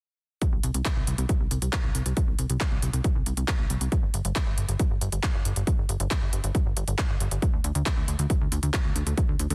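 A straight pulse drives this short euphoric slice of uplifting trance, with the electronic kick drum landing heavy and up front from 0.4 seconds. A layered techno drum kit joins it at the same moment, bringing handclaps and smooth hi-hats, the hats pumping under sidechain, and both drum parts carry a tape-warm, small-room grit from being re-recorded. At 0.5 seconds a plucky analog bass enters, punchy and funky, built from sawtooth and pulse waves with a fast attack, a decaying filter pluck and a moving notch, sitting up front and pumping under sidechain within a low register. The mix is dry, dense and heavily limited in a modern style. The whole fragment is one driving, uplifting section cut from a longer piece, running until 9.5 seconds.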